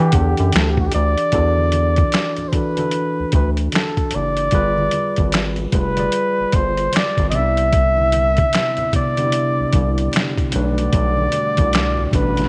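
A warm, up-front flugelhorn carries the melody with light vibrato and a slapback echo, singing in a smooth pop style over this late-night neo-soul R&B excerpt at 75 BPM in 4/4, with a 16th-note swing. Beneath it, a worn, slightly out-of-tune tine electric piano plays the accompaniment through its built-in speakers. A round, deep analog bass with a nasal edge and a filter sweep sits up front alongside a gritty, pitched-down, sampler-style boom bap kit built from a thumpy kick, a medium-tuned snare, hi-hat and finger snaps. Very quiet, soft-handed congas with a thin, bright skin add low-tuned percussion, while a smooth, warbling vintage analog pad with chorus and a long release appears briefly at the start and returns at 7.7 seconds. The harmony moves from Em9 through E9sus4, G7b9 and Cmaj9 to Bm7, all under light reverb and a soft, dark top end.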